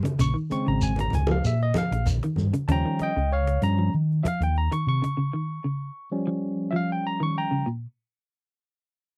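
A straight 4/4 afrobeat groove at 96 BPM opens this short, funky and driving passage cut from a longer piece, with snappy cajon, grainy shekere and low-tuned congas with a thick skin sounding distant in a large room. The dark, round fingered electric bass sits up front beneath them, and the congas and shekere drop out by 2.5 seconds while the bass and cajon carry on until about 5 seconds. Over this, a bright, barky tine electric piano, lightly overdriven through a combo amp, takes a solo until 7.7 seconds, ranging from Db3 up to Db6. A clean, picked electric guitar plays low arpeggios coated in a lush chorus and is the last part still sounding, until 7.9 seconds. The harmony moves from Bbm9 to Eb7 before the chords give way at 7.7 seconds, and the whole recording has a dry, close 1970s-style studio sound with little reverb.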